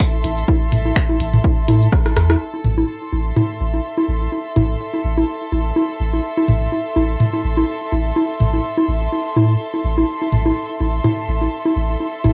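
A lightly reverberant cassette home recording carries this cool, clinical minimal techno fragment, where an up-front, layered, punchy kick drops out at 2.0 seconds and a clicky kit of hats, rim click, finger snaps and cabasa, low-pass filtered and tape-coloured like the kick, closes with a drum fill from 1.9 to 2.4 seconds and a band accent at 2.3 seconds, while a deep, mellow sine sub bass with a pitch-drop attack, analog electronic congas and toms in a large room, and dark, intimate sul tasto chamber strings with light vibrato carry on, the bass and strings pumping from the sidechain.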